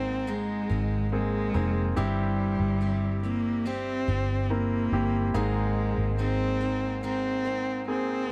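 This heartfelt, emotional pop fragment opens with everything sounding at once: a single bowed cello carries the melody up front, its clear, focused tone colored by vibrato and a slapback echo. Beneath it, a brilliant concert grand piano supplies polished accompaniment with deep bass. A picked jumbo steel-string acoustic guitar with fresh strings plays full-bodied arpeggios in the background. A vintage electric bass, foam-muted, dark and round, sits up front with the cello. The harmony moves from Abadd9 to C/G at 2.0 seconds and back to Abadd9, all in a straight 4/4 with a dry, close 1970s-style studio sound.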